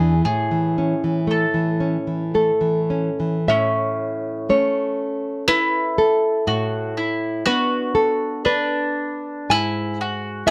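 A bowl-back mandolin, picked on its doubled strings and placed up front, carries a serene melody in this romantic fragment for mandolin and classical guitar, drifting in an unhurried rubato 3/4 over a small-sounding, fingerpicked nylon-string guitar accompaniment that sits equally close, while light reverb lends the pair a warm glow.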